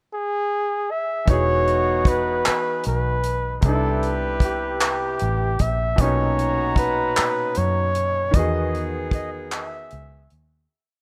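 A mellow, close-miked flugelhorn opens alone at 0.1 s with a jazz-style pickup, its scooped notes and light vibrato carrying a sensual, intimate slow six-eight R&B melody built from song-like motifs. At 1.3 s the full band arrives for the chorus: a brilliant concert grand holds spread chords with grace notes and audible action noise, a smooth-topped horn section plays tight swelling long notes, and a dark, foam-muted fingered bass slides through a round line full of ghost notes and chromatic approaches. The dry, up-front drum kit, with its tight kick, rolled-off top, hi-hat and handclaps, anchors the groove under Emaj9, Cmaj9 and Bmaj9 harmonies, and the rough home-demo mix with light reverb fades out from 8.3 s into a closing break.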